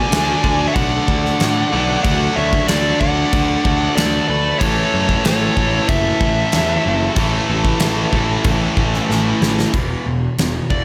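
Hard rock at 94 BPM in a straight 4/4, this short cut from a longer piece feels anthemic and energetic. A dark, smooth lead guitar carries the melody with overdrive, while an octave-fuzz lead guitar adds a distorted second line further back until 9.1 s. Beneath them, a double-tracked sludgy guitar and two tight, bright distorted guitars drive the riffs, backed by a round, fuzzy picked bass. The huge arena drum kit sits up front with a punchy kick, fat snare and bright cymbals in a big natural room, and a drum fill from 9.1 s sets up a short lead guitar solo at 9.7 s. The harmony moves from D to A and lands on E5, all wrapped in light reverb and studio ambience.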